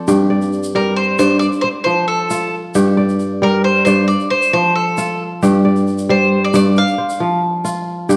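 Set in a straight 12/8 at 90 BPM, this short fragment of West African traditional string and xylophone music feels flowing and hypnotic, its harmony moving back and forth between G5 and F. A crisp, ringing kora opens at 0.0 seconds with fingerpicked arpeggios up front, a grainy, mellow tube shaker sits close from 0.1 seconds, and a picked bowl-back mandolin with doubled strings carries the melody between 0.8 and 7.4 seconds. The production is dark and warm, with a generous recital hall reverb lending the acoustic instruments a lingering bloom.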